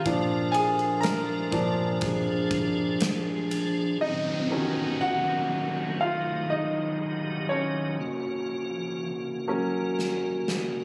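A brilliant, up-front concert grand piano carries this longing, emotional pop ballad excerpt at 60 BPM in Eb minor, backed by piping, lightly overdriven tonewheel organ chords with chorus vibrato and slow rotary speaker, a punchy, airy arena drum kit that drops out at 3.7 seconds and returns for a fill at 10.0 seconds, and an electronic downlifter from 4.0 seconds, all heard through a phone recording in a small room with club ambience.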